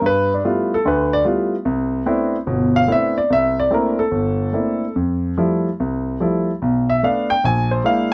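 Solo jazz fragment with a cool, late-night mood, in which a present, up-front grand piano with long sustain plays alone from 0.0 to 8.1 s at 147 BPM in a swung, rubato 4/4, spanning G1 to Ab5 through rich chords such as G13, Cmaj13, Fmaj9 and Bb7#11, with light reverb, a dark, warm production and tuning set to A4 = 441 Hz.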